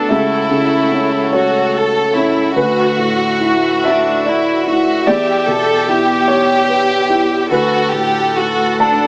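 Intimate and hopeful, this short neoclassical excerpt for piano and strings drifts in a rubato 6/8 at 49 BPM in D major, moving through chords from F#m7/C# to Dadd9, Em7 and Bm7/D. A close chamber violin section carries the melody with vibrato and a soft, sul tasto attack, up front beside a mellow, woody upright piano whose long sustain spans a broad range beneath it. A single distant viola adds dusky bowed accompaniment, while a chamber string section holds sustained chords in the background, all set in a moderate studio reverb with a small-speaker character.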